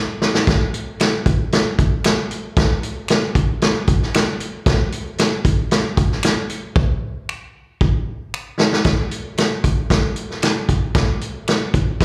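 Heard through a club PA with light reverb and small-room ambience, this danceable, warm soul excerpt at 115 BPM in a straight 4/4 centres on an up-front vintage drum kit with a punchy kick, medium-tuned snare, hi-hat and rolled-off top under slapback echo, opening with a fill at 0.0 s and fitting another between 6.8 and 8.9 s, while close, dry finger snaps with their own slapback echo sit lower in the mix from 1.0 s.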